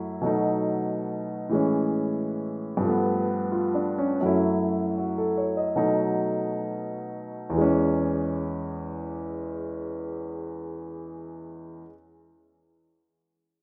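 A single grand piano opens this relaxed solo jazz excerpt in E major, playing with a rubato swing feel in 4/4 that drifts between 64 and 94 BPM and slows from 1.5 to 7.6 seconds. Its present, polished tone sits up front, moving from B7 through Amaj7, G9 and F#m7 before settling on E6 at 7.6 seconds. A lush hall reverb surrounds it, though the overall mix has the rough character of a home demo.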